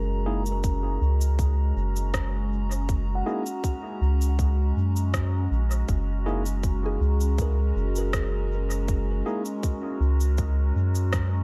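A deep, round sub bass sits up front in this spacious, hazy ambient dub excerpt at 80 BPM in F# major, beneath a warbling, nostalgic tape-like pad holding an F#add9 chord with chorus and phaser. Also present are a woody kalimba ringing arpeggios in the background through a low-pass filter and analog delay, bright tine electric piano stabs soaked in dub echo from 0.3 to 9.4 seconds, a tight electronic kick, and cabasa and rim clicks that echo through a large room in an echo-heavy digital ambience.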